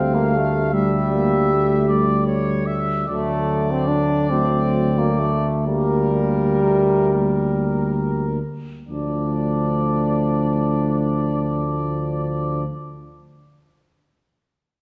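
A classical, hymn-like brass band passage in 6/8, solemn and yearning, that moves with rubato and slows down from 1.9 to 8.9 seconds before a new section begins at 8.9 seconds. A clear trumpet section carries the melody over a mellow flugelhorn second line up front, while a dark, softly attacked euphonium and a distant, roomy trombone with light vibrato fill in the accompaniment in the background, and a mellow tuba plays the bass on a low D up front. The band sits in a wet concert hall reverb that lends the brief passage a spacious glow.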